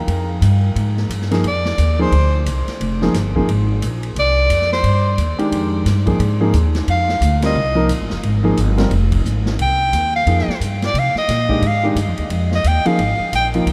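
This excerpt from a longer modal jazz piece opens with upright bass and concert grand piano at 0.0 seconds, joined almost at once by a swinging big-band drum kit of hi-hat, kick, ride cymbal and snare, all moving at a brisk 177 BPM in 4/4 with a swung eighth-note feel in F dorian. The pizzicato bass sits up front with a woody, steel-strung tone, while the piano supplies a warm, deep-bottomed accompaniment over chords shifting from Fmadd9 to Fm11. At 1.5 seconds a breathy soprano saxophone enters with the melody and solos through the rest of the passage, its whispered, intimate tone marked by a soft attack, scooped notes and a light vibrato. The drums carry a punchy kick and a medium-tuned snare with a natural, studio-room character beneath the lead. A huge ambient reverb places the music in a vast, echoing space, lending the hypnotic, spiritual mood a sense of open air.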